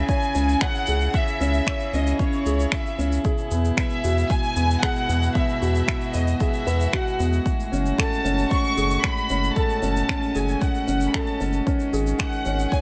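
Light reverb and small-room ambience surround this melancholic, hypnotic piano and strings electronica, cut from a longer piece. A dark, woody violin section with vibrato carries the melody over a distant, sul tasto string quartet whose sustained chords pump with sidechain, while a felt-muted upright piano plays a mellow, intimate riff. An up-front, round analog bass with tube saturation and sidechain pumping anchors the low end, and from 0.1 s an overdriven electronic kick drum joins acoustic shaker and finger snaps with a rolled-off top.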